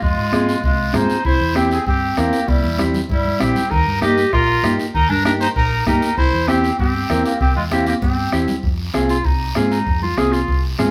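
Fiery and danceable, this cumbia excerpt from a band playing live in a reverberant studio room sets a clear, distant clarinet melody over a growling, gritty trumpet second line with light vibrato, a round hollow-body electric bass, a mellow, clean electric guitar, a soft-beater bombo, high-tuned congas in the background and a raspy guiro, with drum fills along the way before the trumpet drops out at 8.5 seconds and the clarinet takes a solo from 8.6 seconds.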